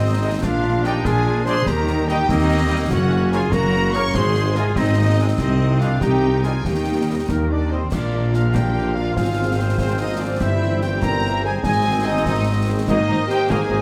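Cut from a longer heroic adventure film score in 6/8, this triumphant, soaring passage opens with a lush symphonic violin section carrying the melody while a focused chamber violin section, a distant oboe, an airy flute and a very quiet clarinet weave second lines over soft viola accompaniment, dark French horn chords, a ringing fingerpicked harp and a deep foundation of woody cellos, double basses and tuba; clear trombones and tight trumpet stabs join at 0.2 seconds, and close, dry snare, clash cymbals and bass drum enter at 0.4 seconds, within a recital hall's moderate reverb.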